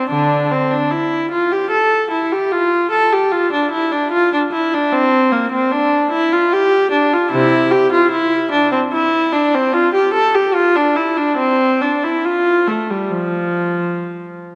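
A solo viola opens the recording at once, bowed by a single player in period style with a reedy gut-string tone and a light vibrato. This is a baroque-style suite movement for unaccompanied viola, dance-like and radiant in mood, moving in 3/4 at around 74 BPM with a flexible, rubato feel. The key settles into F major from 4.9 s, and the instrument ranges from C3 up to A4, tuned slightly below modern pitch at A4 = 439 Hz. The viola sits up front, surrounded by a wet church reverb with a 2.6-second decay that gives the lines a spacious ring, while the top end stays soft and rounded. Cut from a longer piece, the passage ends as the viola stops at 14.4 s, leaving the reverb to fade in the room.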